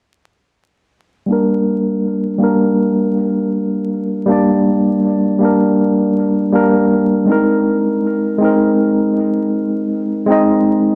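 Hypnotic and cinematic, this trip hop excerpt at 80 BPM in G phrygian features a lone bright tine electric piano, clean and up front as if heard through built-in speakers, playing accompaniment from 1.3 to 11.0 seconds. Harmonic tremolo, tape echo and a low-pass filter sweep shape its chords as they move from Gm to Abadd9 at 7.3 seconds. A moderate spring reverb and a veil of vinyl crackle surround the piece, which is cut from a longer work.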